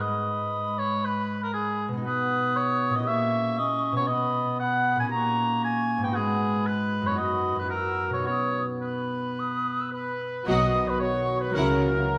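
In a rubato 4/4 at 108-119 BPM, this fast, dramatic and urgent romantic orchestral passage in B major opens with ringing harp arpeggios beneath second lines from an up-front oboe, a close-miked clarinet and an airy, distant silver flute, while the harmony moves through G#m, A#dim7 and D#7/A#. A trumpet enters with stabs at 9.9 s. At 10.5 s the orchestra fills out: lush bowed violin sections carry the melody and a second line in the background, a very quiet viola section accompanies, mellow French horns and trombones sustain chords, and rich cellos and double basses supply the bass, all set in a moderate scoring-stage reverb until the cut at 12.2 s.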